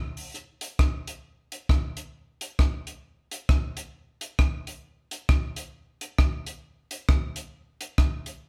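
A dry, up-front compact cocktail drum kit carries this driving, energetic ska fragment at 133 BPM in 4/4 with swung eighths, its punchy kick, hi-hat and rim clicks playing from 0.2 to 8.3 seconds in a moderately reverberant studio room where the band plays live.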